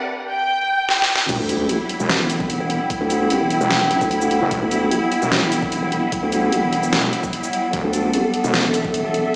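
A saturated, detuned wobble bass dominates this heavy, menacing half-time wobble dubstep excerpt, arriving with the drop at 1.3 s alongside a background sub drop on an Emadd9 chord, and a nasal, formant-filtered vowel-sweep wobble bass joins at 1.4 s. Before the drop, a dark symphonic violin section sings a brief, expressive melody with portamento and digital delay over a filter-sweep build, while the overdriven drum kit enters at 0.9 s with a fill. Through the drop, a knocking electronic kick drives the groove as the deep snare and bright hats push up front, joined by a clear, lush studio string section and a warbling, lo-fi tape-like pad, both with sidechain pumping. Everything is set in a lush hall reverb that sounds as if played on a big sound system in a bare stone room, with a small-speaker tone.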